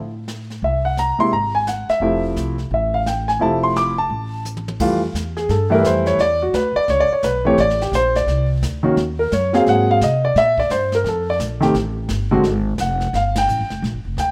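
A jazz piano trio swings briskly at 173 BPM in F major, with a sophisticated, playful mood in this short cut from a longer piece. The upright bass starts things alone at 0.0 seconds, plucked with a woody, thumpy gut-string tone that sits dark and up front. The brush kit joins at 0.3 seconds, its brushed snare, hi-hat, ride, crash, toms and boomy kick heard in a small room, and a drum fill at 4.5 seconds leads into the second section at 4.8 seconds. The concert grand piano takes the melody from 0.6 seconds, intimate and natural with deep bass and audible action noise, over colorful harmony that moves from Caug7 and Fmaj7 through Ebm, Ab9 and Bbsus2 before reaching G7(no3). A band accent lands at 13.3 seconds, and the rough home demo mix carries a light reverb.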